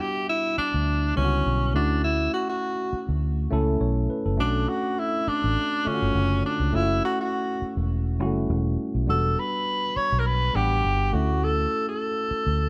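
Lush 1970s-style soul at 102 BPM in 4/4 with a lightly swung sixteenth-note feel, this short fragment of a longer piece sits in E dorian and carries a cinematic, bittersweet mood. A tenor saxophone leads the melody between C#4 and C#5, its warm subtone, vibrato and scooped notes giving a punchy, jazz-style solo voice that sounds up front yet roomy and distant, trailed by a slapback echo. Beneath it, a worn tine electric piano, clean but slightly out of tune and heard through a combo amp, spreads chords across a broad register from the very start. A vintage muted fingered electric bass enters at 0.6 seconds, dark, round and foam-muted, with an amped tone sitting prominently in the low end. The harmony moves through Em7, Dmaj7, a rootless Bm7 and F#m7 before circling back to Em7 and Dmaj7, all wrapped in light reverb and small-room ambience over 12.7 seconds.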